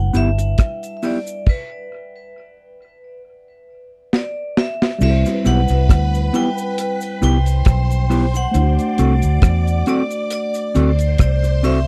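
Sweet and tender, this excerpt from a longer lovers rock reggae piece moves at a relaxed 68 BPM in 4/4 with a light swing on the sixteenths, opening on a G6 chord. A metallic, ringing vibraphone struck with hard mallets carries the melody, its slow motor vibrato and tape echo set in a boxy small room, while a worn, slightly out-of-tune tine electric piano, also touched by tape echo, fills in the accompaniment. Up front, a round, punchy, foam-muted fingered bass anchors the low end, joined by dark, clean stabs from a fingered electric guitar and a dry, dark drum kit with a tight kick, medium-tuned snare, rolled-off top and tape echo, while a cabasa sits quietly in the background. The band drops into a stop at 1.5 s, and a drum fill at 4.1 s leads into a new section where a swirling, bright sawtooth string machine enters at 5.0 s, drenched in ensemble chorus and phaser, over Cmaj7 and D7. 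The whole sound is dry and close, in the manner of a 1970s studio recording with little reverb.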